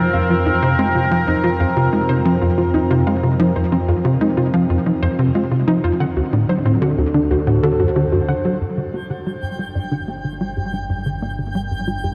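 A tight, saturated sequencer bass drives this mysterious, expansive excerpt of ambient space music at 92 BPM, joined from the start by a bright, resonant pad with chorus, phaser and shimmer, a warbling, lo-fi pluck playing detuned arpeggios through tape echo, and a low analog drone sustained beneath, all set in a vast cathedral-like reverb. The harmony moves from F5 to D7 before settling into G minor at 8.6 seconds, where filter sweeps move across both the bass and the arpeggios. At 9.0 seconds a faint granular texture adds a sparkling, octave-up shimmer high above.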